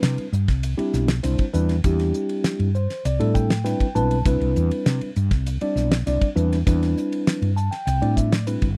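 Soaring and bright, this short electric jazz fusion excerpt moves at 100 BPM in a straight 4/4 on a Cmaj9 in C major, with a mellow tine electric piano bathed in lush chorus adding fills at 2.4 and 7.3 seconds over a woody, round fretless electric bass and a damped 70s drum kit with a fat snare, tight kick and dark cymbals, all captured in a dry, close 1970s-style studio sound.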